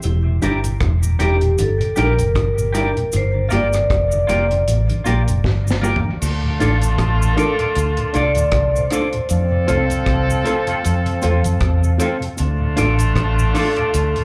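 Roots reggae at 78 BPM in D minor with a meditative, serious mood, cut from a longer piece and heard as a live club gig through the venue's PA, where a ringing, metallic vibraphone carries the melody with dub and slapback echo over a round, foam-muted bass sitting up front, a dry, dark drum kit with a high-tuned snare and tight kick, close cabasa, a soft, flute-like tonewheel organ with slow rotary speaker in the background, twangy clean electric guitar, and woody upright piano stabs, with a drum fill from 5.4 to 6.2 seconds bringing in a clear, vintage horn section on a second line.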